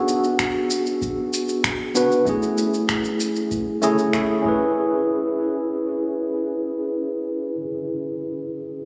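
Sunset chillout at 96 BPM in a straight 4/4, this smooth, sunny excerpt is cut from a longer piece and tuned to A4 = 439 Hz. A clean tine electric piano sits up front as the accompaniment, heard as if through built-in speakers and trailed by tape echo, moving from Bm6 to Amaj7 and on to C#m7 between A3 and B4. Alongside it, also up front, a layered electronic shaker and finger snaps carry a tape-warm, produced texture that was re-recorded in a small room. A deep analog electronic kick enters at 0.4 s and sits low in the mix. Both percussion parts drop away by 4.6 s, leaving the electric piano alone until 8.9 s. The whole sound is drenched in a lush hall reverb and club ambience, with the compressed, roomy character of a phone recording.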